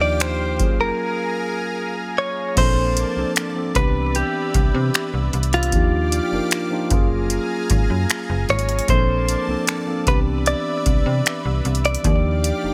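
A clean, compressed electric guitar melody with delay opens this romantic, smooth contemporary R&B excerpt at 76 BPM, over mellow tine electric piano, a lush detuned pad with chorus and a snappy, metallic FM bass moving through rich major-ninth chords, joined at 0.2 seconds by an overdriven, booming analog drum machine with deep kick, finger snaps, crash and metallic hi-hats, all in a dry, close sound with a break from 1.0 to 2.6 seconds.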